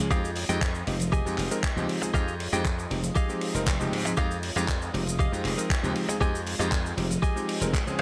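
Groovy and cosmic, this nu-disco excerpt in F minor moves at 118 BPM in a straight 4/4, sitting on a single Fm9 chord. A glassy, punchy slap bass and an up-front, thumpy electronic kick anchor the groove. A tight funk kit adds cabasa, handclaps, hi-hat and ride cymbal, and ringing, soft-handed congas join very quietly at 0.5 seconds. A warm, vintage electric grand piano with a clangy low end pumps against the kick, a twangy, clean electric guitar riff with subtle chorus enters at 0.1 seconds, and a lush, very quiet string machine holds sustained chords, all captured in a dry, gritty hardware sound.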